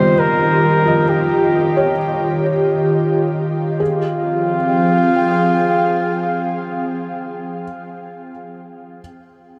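Ambient fragment in F minor at 67 BPM in a slow 3/4, melancholic and serene, where a distant, roomy flugelhorn sings a solo melody with tape echo over an ethereal, detuned pad of sustained chords thickened by ensemble chorus, while a felt-muted upright piano plays soft, mellow arpeggios through tape echo, the harmony moving from Eb7 to Fmadd9 at 3.8 s, all washed in a huge ambient reverb, with the piano carrying on alone from 7.3 s until 9.0 s.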